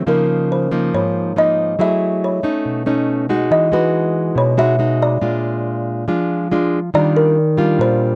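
A fingerpicked nylon-string guitar opens this short bossa nova fragment, cut from a longer piece, sitting up front with a classical, acoustic tone as it lays down the accompaniment. A moment later, at 0.1 seconds, a kalimba carries the melody with a woody, hollow-box ring and a soft fingertip pluck whose mellow, band-limited sound has a vintage cast. At 140 BPM in a straight 4/4, the mood is romantic and sophisticated, moving through lush extended harmony from Db69 through Gbm9, B9 and Emaj9 to Bb7, settling on Ebmaj9 at 6.9 seconds. The recording has the dry, close feel of a 1970s-style studio, touched with light reverb. Both parts play together to the end at 8.2 seconds.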